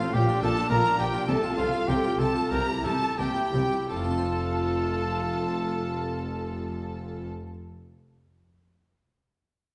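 Classical baroque-style concerto movement in F major, brilliant and lively, cut from a longer piece at 83-109 BPM in straight 4/4, where a warm solo trumpet and a focused violin section share the melody over a plucked, Italian-style harpsichord, a smooth-topped viola section and a background second violin line, while an even cello section and a clear, distant double bass section carry the bass, all heard from further back in a wet recital hall as the music slows through its opening 3.9 seconds toward a settled F chord.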